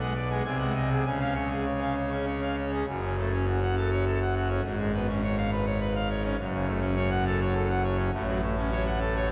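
In a straight 3/4 at 102 BPM, this majestic, dramatic classical organ toccata in F# minor (tuned to A4 = 441 Hz) is cut from a longer piece and features a solo pipe organ on full organ with brilliant mixtures and a romantic voicing, spanning F#1 to G#5 and set up front, moving from G#7/B# and C# into a new section at 2.9 s built on F#m, C#7/G# and F#m/A, all bathed in a wet cathedral reverb and colored by the warbly pitch drift of worn old cassette tape.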